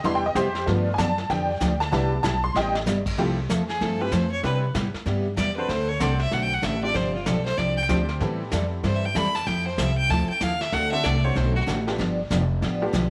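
Country western swing with a down-home, swinging mood, cut from a longer piece, opening on a jangly, detuned honky-tonk upright piano lead over a bright picked steel-string acoustic guitar with audible finger squeak, a woody, thumpy pizzicato upright bass, and a brushed vintage drum kit with dark cymbals whose short fill comes at 2.5 seconds. A clear, smooth bowed fiddle with light vibrato enters at 3.7 seconds and carries the solo until 11.6 seconds over jazzy seventh and ninth chords. The band sits in a moderate echo-chamber studio ambience, with the bass and fiddle up front and the drums rolled-off and warm.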